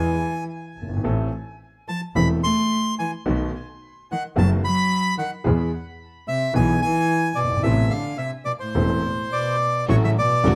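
Tango at 109 BPM in A harmonic minor, dramatic and tense with a rubato feel, where a reedy, bright bandoneon carries the melody through tape echo, an earthy, biting bowed cello plays a second line, a vintage concert grand with deep bass supplies accompaniment, a focused bowed double bass holds the low end, and a distant, floating chamber string section adds soft stabs from 9.9 seconds, all in light reverb as part of a longer piece.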